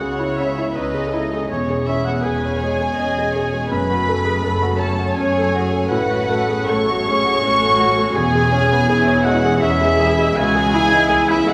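Passionate and brooding, this romantic classical excerpt in a rubato 3/4 sets a clear, slightly worn concert grand piano up front carrying the melody alongside a sul tasto chamber violin section, while an airy flute, a soft oboe and a second violin line weave secondary voices over warm sul tasto violas, background French horn chords, a dark woody cello section and a floating double bass section, all bathed in a recital hall's lingering reverb.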